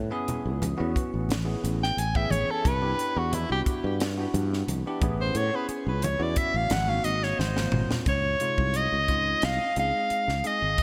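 Bright and funky, this short electric jazz fusion passage moves at 89 BPM in a straight 4/4, centred on A major and cut from a longer piece. A growly fretless electric bass sits up front from the start, joined almost at once by a bell-like tine electric piano dressed in lush chorus, moving through Amaj9, Cmaj9 and G#7 before shifting to Dbmaj9 at 8.1 seconds. A crisp, polished drum kit with a high-tuned snare and tight kick sets the groove alongside very quiet, ringing congas that drop out at 8.1 seconds, just after a drum fill marks the turn into the next section. The soprano saxophone takes the lead from 1.8 seconds as a soloist, its clear tone carrying light vibrato, subtone, scooped notes and a smooth top, with a touch of delay. The whole production has a glossy 1980s digital sheen, set in a moderate, lush hall reverb that lends the ensemble an airy sense of space.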